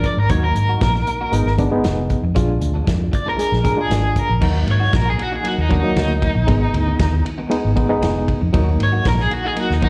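Mournful and brooding, this straight-eighth soul blues in 4/4 rides a minor progression that keeps circling back to its home chord. A round, foam-muted fingered electric bass sits up front with an amped, punchy tone, while a crunchy breakbeat drum kit brings gritty, saturated kick, snare, hi-hat, ride and crash with dark cymbals and a rolled-off top. A barky, reedy electric piano fills in the accompaniment with a bright, clean sound under fast tremolo. An electric guitar through a small old amp adds compressed, slightly broken-up stabs in the background, colored by tremolo and slapback echo. The biting overdriven guitar carries the melody up front with the same tremolo and slapback treatment, stepping into a solo from 4.4 seconds, and the band sounds like a live gig heard through a venue's PA, wrapped in club reverb.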